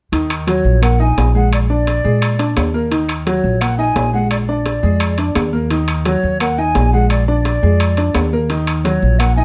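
Moving at 172 BPM in a straight 4/4, this danceable, passionate salsa excerpt in Eb minor alternates between Ebm7 and Bb7, with a thumpy, gut-strung pizzicato upright bass and a brilliant upright piano with short sustain sitting up front, compressed, saturated metal-shell timbales ringing alongside, very quiet woody claves joining at 0.3 seconds, and a mellow, hollow silver concert flute with vibrato and a crisp attack entering at 0.5 seconds from a distance, set in a dark production with light reverb.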